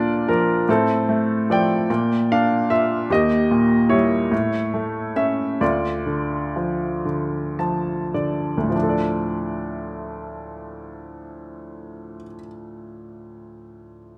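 A bright, intimate baby grand piano, up front with brilliant tone, long sustain and audible action noise, carries this wistful, dark solo classical fragment, cut from a longer piece. In D minor and 6/8 with a rubato feel around 33-50 BPM in dotted quarters, it moves through Bb, F/A, Eb and A before settling on Dm. It slows from 3.1 seconds, adds a fill at 7.1 seconds, and opens into a new section at 8.7 seconds, all within a wet recital hall reverb.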